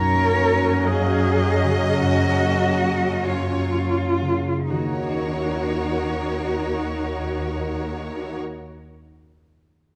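A rubato 6/8 pulse of 39-55 BPM in dotted quarters slows through the opening 4.7 seconds of this longing, bittersweet cinematic film score excerpt in Eb minor, moving from Gbmaj7 to Ebm7 at 4.7 s. A distant solo cello carries the warm, expressive melody with vibrato and portamento, while a lush violin section adds a soft-attacked second line above, a distant viola section supplies bowed accompaniment, and a focused, smooth-topped cello section holds the bass. Ringing, thumb-plucked concert harp arpeggios span Gb2 to F5 and sound on until 8.7 s, after the strings stop at 8.4 s, all set in a moderate scoring-stage reverb.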